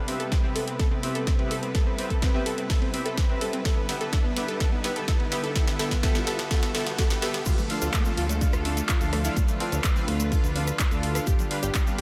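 Progressive house at 126 BPM in 4/4 with a straight, uplifting and euphoric feel, cut from a longer piece and tuned to A4 = 439 Hz. A build-up and drum fill run from the start until the drop at 7.5 seconds, with a filter sweep on the soft supersaw, whose smooth, detuned stabs share the space with a lush, bright unison pluck playing arpeggios through delay, and a clear, biting symphonic string section holding sustained chords with vibrato, all three pumping against the sidechain. The harmony moves from Cmaj7 to Em7, then Dm and G7 after the drop. A punchy, up-front electronic kick with studio reverb drives a layered house kit of claps, rim clicks, hi-hats, snare and crash, backed by a very quiet, gritty sampler-style kit and a faint riser and downlifter. At the drop a fat, thick analog bass enters with its own filter sweep, joined by a grainy egg shaker and very quiet, tape-tinged congas and bongos. 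Light reverb glues the mix together.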